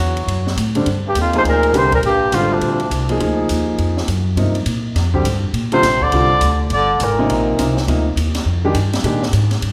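Heard in a concert-hall reverb, this short cut from a longer modal jazz piece in G phrygian swings briskly at 206 BPM in 4/4, with a cool, spiritual mood and a D7 moving to Gm7. A breathy, distant trumpet carries the melody with light vibrato and scooped notes, while a bright, vintage-toned bass clarinet plays a second line beside it; both sound from the start to 3.1 seconds and again from 5.7 seconds. Underneath, a woody, thumpy pizzicato upright bass sits up front throughout, an open jazz kit with dark cymbals, a high-tuned snare and a boomy kick enters at 0.2 seconds, and a clear, intimate grand piano with audible action noise and long sustain accompanies.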